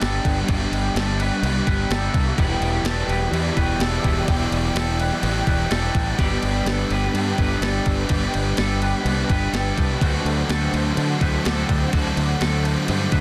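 A growling fingered electric bass sits up front, bright and overdriven, anchoring this hazy, dreamy slice of shoegaze-tinged rock and dream pop at 126 BPM in 4/4, cut from a longer piece. Beside it, a clean 12-bit drum machine thumps out kick, medium-tuned snare and crash cymbal with a sampler-style, tape-softened character. Two overdriven guitars play riffs throughout: one crunchy and treated with analog chorus, the other compressed, set further back and smeared with reverse reverb. A twangy, bright clean guitar traces arpeggios in the background through lush chorus and tape echo. From 2.8 seconds a soft, detuned organ-like pad adds calm, pure sustained chords with slow attack, long release, ensemble chorus and its own reverb. The harmony moves from G through Em7 and back to G before settling on D7, all in a light reverb and a dense, heavily limited modern master.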